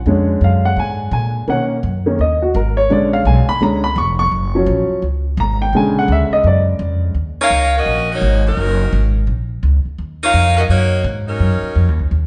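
An upright bass and a woody upright piano open this short cut from a longer big band swing number, the piano taking a solo over chords that move among dominant sharp-nine and major seventh colors, its notes short in sustain and sitting up front. Beneath it, the thumpy pizzicato upright bass on steel strings holds down the low end from the first moment to the last, giving the swung groove a dramatic, sultry pull. The piano stops at 7.1 seconds, and at 7.4 seconds a bright saxophone section takes over the melody as an ensemble, playing in a jazz style through to 11.9 seconds over a minor seventh chord. The band sounds as if it is playing live together in one large studio, with a moderate reverb, a dark top end and a faint mains hum in the background.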